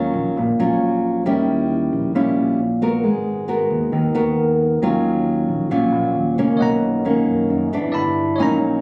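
A classical-style fingerpicked nylon-string guitar sits up front over a warm, amped fingered electric bass, opening this smooth, melancholic bossa nova fragment at 135 BPM in Eb minor on an Ebm9 chord. A bell-like, barky tine electric piano joins high above at 6.6 seconds as the harmony moves through Bmaj9 to G6, all heard in a compressed phone recording of a club room with moderate reverb.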